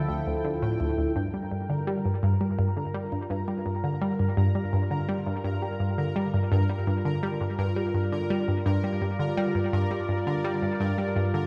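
Set in a lush hall reverb, this hypnotic, cosmic stretch of sequencer-driven ambient space music, cut from a longer piece, is led by an up-front analog pluck riff that is round, nasal and detuned, with chorus, phaser and analog delay. Beneath it, a bright, wave-folded, resonant pad sustains chords through chorus and phaser and fades in from 1.2 seconds as the harmony moves from Dm to Gm7. A very quiet, mellow analog drone with pulse-width modulation holds the bass, while a pulsing, tempo-synced unison texture glimmers higher up with chorus and its own reverb.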